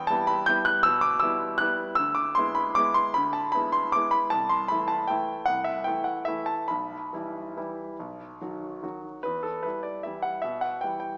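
A clear concert grand piano carries this short solo waltz from start to finish, its range stretching from B1 up to G6, with deep bass and audible action noise that place the listener close to the keys. The piece is classical in style, in E minor and 3/4 time, with a rubato feel that lets the tempo drift between 135 and 166 BPM and gives the music a wistful, nostalgic mood. The harmony moves from Em through E7/D, Am/C and Em/B to a B chord at 8.0 seconds, then returns to Em as a new section begins at 9.2 seconds. The piano sounds up front and polished, with a short sustain, set in a moderate concert hall reverb. The recording has a small-speaker character and a faint mains hum, and this brief passage is cut from a longer piece, ending at 11.2 seconds.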